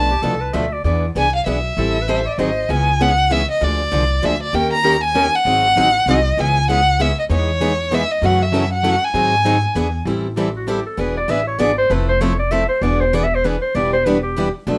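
A bowed, expressive violin with vibrato and portamento carries a bittersweet C# minor melody over two picked steel-string acoustic guitars, one bright and boxy and the other plugged in, both with finger squeak, and a woody, thumpy pizzicato upright bass in this virtuosic swung jazz manouche piece in 3/4 at 195 BPM under light reverb, while a clear, distant clarinet with scooped notes adds a second line until 2.7 s and, after the violin stops at 10.0 s, returns for a solo at 10.6 s.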